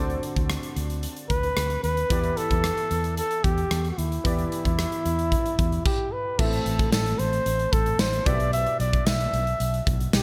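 A mellow flugelhorn with vibrato carries the melody up front in this nostalgic, moody 1980s-style pop excerpt, backed by a clear baby grand piano treated with analog chorus and a dark, round, foam-muted fingered electric bass. A big rock drum kit with a punchy kick, airy polish and gated reverb keeps a straight 4/4 beat, and the music stops briefly at 5.9 seconds before a very quiet, jingly tambourine joins at 6.9 seconds. The bright digital production sits in light reverb and small room ambience.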